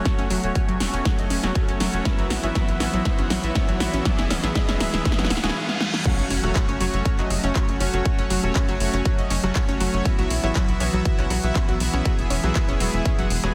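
A dense, heavily limited modern master with light reverb frames this emotional, dreamy progressive house piece in F# minor at 120 BPM, cut from a longer track. The opening build-up runs to 6.1 seconds, with a drum fill, a filter sweep on the pad and a reverse cymbal from 5.1 seconds, before the drop lands with an impact. An airy, breathy pad holds sustained chords in the background with chorus and a slow attack. A lush, detuned unison pluck spins arpeggios behind it, and a smooth supersaw fires stabs with delay, all three pumping against the sidechain. Up front, a punchy layered electronic kick sits alongside a deep house kit of crash, handclaps, metallic hi-hats, rim click and a punchy snare, the whole kit overdriven and re-recorded in a large room. A tight, nasal sequencer bass with tube saturation pulses low beneath it, while very quiet risers and effects colour the first 8.1 seconds over a cycle of F#m, Bsus4 and E.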